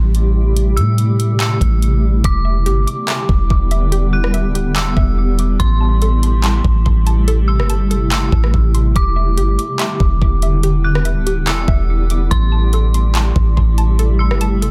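A half-time 4/4 groove at 143 BPM drives this ethereal, spacious cloud-rap excerpt in E minor, with an up-front smooth R&B drum kit of knocking kick, hi-hat, handclaps and rim click entering at 0.1 seconds over a deep, round 808-style bass. A cloudy, evolving granular pad with built-in reverb and sidechain pumping sustains chords moving between Am7 and Em7, while an eerie, inharmonic detuned synth bell carries the high melody through chorus, phaser, low-pass filter and delay. From 2.2 seconds a hollow, bouncy square pluck adds background arpeggios with chorus, filtering and delay, and the mix sits in a digital ambience with a dense, heavily limited modern master.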